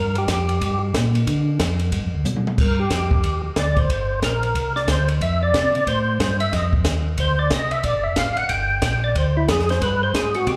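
A percussive tonewheel organ with key click, chorus vibrato, slow rotary speaker and slapback echo solos over a round, dark tonewheel organ bass from the first second, with a dry compact cocktail drum kit of dark cymbals, high-tuned snare and punchy kick joining at 0.2 seconds and playing a fill at 2.3 seconds, in this bluesy, soulful soul jazz organ trio at 182 BPM with a swung feel, heard as a live gig through the venue's PA with club reverb, moving through chords from Gm7 to Abmmaj7/G.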